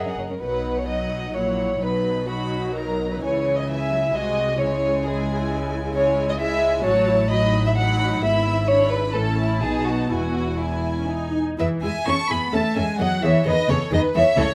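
Graceful and spirited, this quick classical-period movement for string orchestra moves at 130 BPM in 3/4 with a rubato feel, starting in B major and shifting to E major from 6.0 s. A chamber violin section carries the melody with vibrato and a soft sul tasto touch, while a second violin line sits up front with a smooth top, a woody, dark viola section fills out the lush accompaniment, and a distant, floating cello section joins a pure double bass section, which enters at 0.2 s, on the bass. Light reverb surrounds the intimate, close sound, and the harmony passes through C#m, F#m/A and B7 before settling on A and E in the closing bars of this excerpt from a longer piece.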